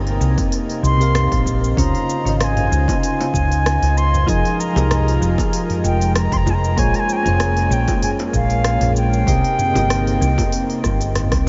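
A dreamy, reverb-soaked sound with a softened top end frames this smooth sunset chillout clip, cut from a longer piece, with a gentle swing in its groove. Soft, round synth keys with chorus and delay trace the chords, while a lush, detuned unison pad with vintage sampler grit sustains beneath them through a progression moving from Cm7 through Dbmaj9, Fm11 and Bbm9 before returning to Cm7. Up front, a dark, hollow-body fingered electric bass gives the low end a punchy, amped presence. A deep house kit with smooth hats, rim click, shaker and toms sits quietly alongside a punchy layered electronic kick, and very quiet, low-tuned bongos join at 2.9 seconds. An airy, mellow wooden flute carries the melody with a straight tone and delay from 0.8 seconds, and a drum fill at 10.8 seconds closes the passage.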